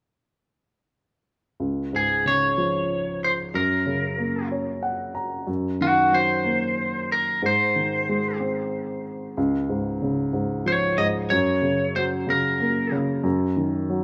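A lightly driven electric lead guitar carries the melody up front, its bright, twangy tone slightly broken-up and compressed, with picked notes trailing into plate reverb and tape echo. This is a swaying, heartfelt pop piece in 6/8, moving at a slow 62 BPM counted in dotted quarters and set in Db major. An upright piano with a woody, up-front character provides the accompaniment, entering at 1.6 seconds just before the guitar and covering a broad range beneath it, bathed in its own plate reverb. The piano steps forward with a short fill around 4.5 seconds, and the harmony cycles through Db, Gb, Ebm/Gb and Ab before returning to Db as the piece moves into a second section at 9.4 seconds. The overall sound has the rough feel of a home demo mix set in a wet studio reverb, and the clip is cut from a longer piece.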